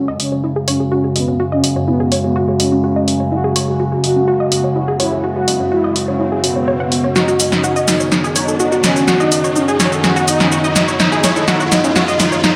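A dreamy, reverb-soaked mix carries this dark, driving melodic techno build-up at 125 BPM, where a punchy, up-front analog drum machine with punchy snare, hi-hat and shaker moves into a fill at 7.2 s as the harmony shifts from F#sus2 to B, beneath a fat, warbling synth brass melody with chorus and tape echo, lush detuned unison pluck arpeggios through analog delay, a bright, morphing wavetable pad, a resonant drone of moving overtones, a round, very quiet bass, and a background riser that enters at 3.4 s while filter sweeps run across the pluck, brass and pad.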